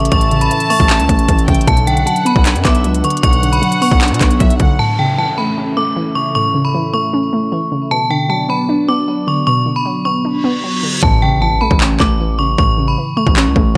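A lo-fi trap excerpt at 154 BPM in a half-time feel, eerie and melancholic, where a ringing, inharmonic FM bell carries the melody over a warbly dusty pluck and a dark tape-like pad moving between A and Bm, while a distorted 808-style bass, hard-clipped trap drums with crisp hats and handclaps, and a floating, sul tasto violin section open the excerpt, then drop out at 4.8 seconds for a downlifter passage before the drums and bass return with an impact at 11.0 seconds, hi-hats muted.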